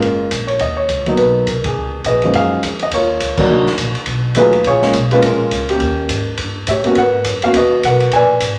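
Sophisticated and relaxed, this short cut from a longer piece is an up-tempo swinging jazz piano trio in F# major at 208 BPM, with a dark, mellow baby grand carrying the melody up front over rich extended chords such as F#maj9, B7#11 and D#7b9. A woody pizzicato upright bass and an airy acoustic drum kit with dark cymbals and a boomy kick support it throughout, with the whole band hitting accents at 1.6 and 3.3 seconds. A generous large-studio reverb adds space around the trio as the music moves into a new section at 2.3 seconds.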